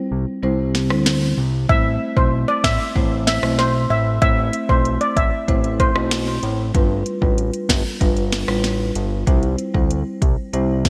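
A shimmering, close-miked steel pan carries the lead in this tough, bouncy dancehall excerpt, playing a short melody touched with delay from 1.7 s to 5.9 s. Beneath it, an up-front fat analog bass has a detuned sawtooth-and-square tone with a moving notch, a fast attack and sustained notes. A soft-mallet marimba adds mellow, round accompaniment. An electronic afro-pop drum kit brings a deep kick, sharp snare, metallic hats and rim clicks, roughened by vintage 12-bit sampler grit and gated reverb. After a brief opening break on C, the harmony moves through Am and G7 before returning to C, all set in the light reverb and studio ambience of a bright 1980s-style digital production.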